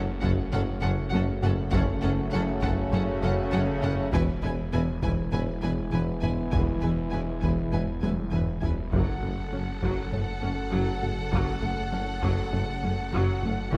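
A straight 4/4 pulse at 100 BPM drives this relentless, futuristic hybrid orchestral and electronic film cue in F# minor, cut from a longer piece, where a rich, lush symphonic violin section carries the melody over background chamber violins, portamento violas, horn and trombone chords, a soft round pluck arpeggio, a rubbery square bass riff, a mellow distant tuba, a swirling phased saw bass, very quiet cellos and woody double basses, and hard-stick taiko with a fill at 8.0 seconds, all set on a moderate scoring-stage reverb and opened by a barely audible electronic impact as the chords move from F#m to E and back.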